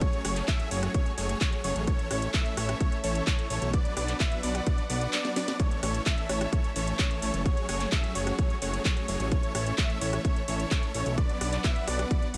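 A huge, bright, detuned supersaw lead carries the riff in this euphoric, anthemic festival progressive house passage at 129 BPM in A major, joined by a nasal, warbling unison lead spinning vibrato-tinged arpeggios, both pumping under sidechain and trailed by tape echo. Beneath them a fat, saturated analog bass sits up front, while a very quiet, lush, woody string section holds bowed chords through F#madd9, A and Bm. A punchy electronic kick drives the straight 4/4 groove alongside a house kit of cracking snare, metallic hi-hats, handclaps and rim clicks, with a short drum fill arriving at 5.2 seconds, all set in digital ambience within this slice of a longer track.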